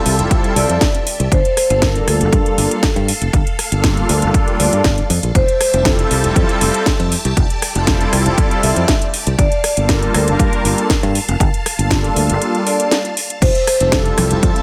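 Nu-disco at 119 BPM in a straight 4/4, this short cut from a longer piece has a groovy, feel-good lift, moving between Fmaj9 and Gm9. A punchy, tape-warm electronic kick sits up front with a house kit of cracking snare, metallic hats, rim clicks and crash, both set in a small room reverb. A growly fingered electric bass, direct and prominent, anchors the low end. Behind it, a smooth, detuned sawtooth pad with chorus, tape echo and sidechain pumping blends with a lush, vintage string machine that carries phaser and ensemble chorus on its sustained chords. A ringing vibraphone played with medium mallets, motor off, carries the melody from 0.6 seconds through an analog delay. Thick-skinned, low-tuned congas appear only briefly at 14.2 seconds in the background, and the whole mix has an echo-heavy, lightly reverberant digital ambience.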